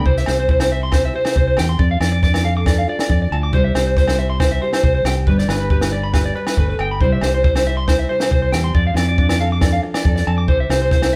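A twangy, slightly broken-up electric guitar stands up front, picking high arpeggios over a danceable, carefree highlife groove in straight 4/4. A growly fingered electric bass and a compact cocktail drum kit with a punchy kick and high-tuned snare carry the rhythm, while a fingerpicked nylon-string guitar adds classical-toned accompaniment and vintage-sounding agogo bells ring in the background. The band plays live together in a moderate stone room, cycling through C, F6 and G in this short excerpt cut from a longer piece.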